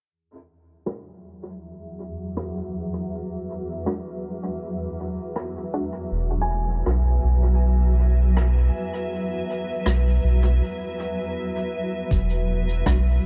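Hazy and peaceful, this ambient dub excerpt opens with muted, chorused chord stabs sitting in the background and a brushed rim click and cabasa carrying dub echo, soon joined by a cloudy, evolving granular pad holding an E9 chord, all under a long filter sweep. At 6.1 seconds a round, up-front sub bass with tube saturation arrives, soon joined by soft arpeggios from a felt-muted upright piano with audible action noise. After a break, a deep, tape-toned electronic kick drum enters at 12.1 seconds.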